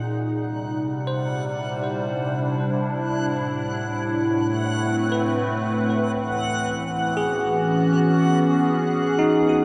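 Drenched in a vast, echoing cathedral reverb, this serene ambient excerpt in 3/4 rests on an up-front, morphing, warbling wavetable pad with chorus holding sustained chords through Cadd9, Amadd9 and E6, while a reversed, granular, dreamy texture fades in high above and a bell-like tine electric piano with tape echo fades in from the background at 1.1 seconds with clean, bright arpeggios.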